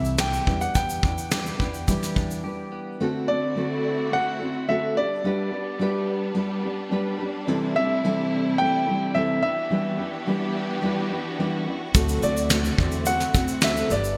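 This heartfelt, easy-going acoustic pop excerpt opens with an upright piano carrying the melody up front, its woody, vintage tone given long sustain and a touch of delay, over a dark, full-bodied nylon-string guitar played with the thumb, finger squeak and all. At 107 BPM in a straight 4/4, a soft brush kit with a fat snare, tight kick and shaker, treated with gated reverb, sits alongside a pizzicato upright bass with steel strings, while a bright, twangy clean electric guitar picks arpeggios through lush chorus in the background. Drums and bass soon fall away for a brief break, and at 3.0 seconds a bowed string section enters with expressive vibrato and a smooth top, sustaining chords over changes that move from D7 through G, C6 and Em7, as the electric guitar stops shortly after. Bass, drums and electric guitar return at 11.9 seconds on a D7 chord to fill out the closing bars. The mix has a bright 1980s-style digital sheen, set in a moderate hall reverb blended with a small room ambience.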